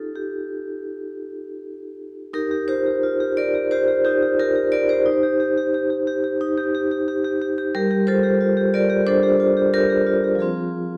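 Contemporary classical music for solo vibraphone, flowing and playful at a rubato 89 BPM in 4/4 and Eb lydian, this 11-second passage from a longer piece has the up-front vibraphone played with medium hard mallets, its metallic, bright, ringing tone shimmering with fast motor vibrato across a range from F3 to D5 as the harmony moves from Ebadd9 through Cm/Eb and Gm7 to Fm, set in a moderate recital hall reverb within a dark overall production.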